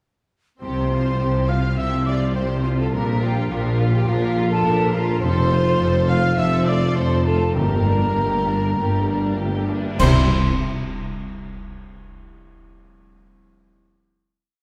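In a straight 4/4 at around 97 to 105 BPM, this complete heroic adventure film cue in C mixolydian feels adventurous and soaring, easing into a broadening slowdown from 4.1 seconds. Lush, bowed violins carry the tune with a rocking two-note figure and sustained chords, while a second violin line doubles it at the octave. An airy, hollow silver flute sings a tongued upper line, and a dark trumpet in the background adds stabs that double the tune. Very quiet violas with expressive portamento rock beneath them, and a thumb-plucked harp rings out soft broken chords. Focused cellos anchor the bass on the beats, with a mellow tuba and woody double basses doubling their line. At 7.6 seconds the percussion arrives, with up-front bright cymbal swells and crashes, bass drum strokes, and very quiet, articulate calf-head timpani. A band accent lands on the final C chord at 10.0 seconds, and the whole ensemble blooms in the reverberant acoustic of a concert hall.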